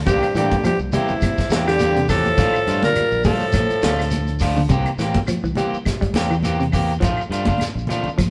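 A tight funk drum kit plays a lightly swung sixteenth-note groove at 103 BPM in 4/4, its high-tuned snare and tight kick sounding natural in a small room, while damped, high-tuned congas, a grainy shekere and very quiet woody claves fill in behind it. This joyful, funky afrobeat passage, cut from a longer piece, sits in C mixolydian and moves between C7 and Bbmaj7. A punchy fingered electric bass anchors the low end as a clean, picked electric guitar plays arpeggios in the background and a second guitar at the edge of break-up adds picked stabs. Up front, a bright, gritty alto saxophone carries the melody from 0.1 to 4.4 seconds, shadowed by a very quiet, edgy tenor saxophone with light vibrato and a smooth-topped bass trombone on second lines. After the horns stop, the rhythm section and percussion carry on through to 8.3 seconds, the whole band heard playing live together in a moderately reverberant stone room.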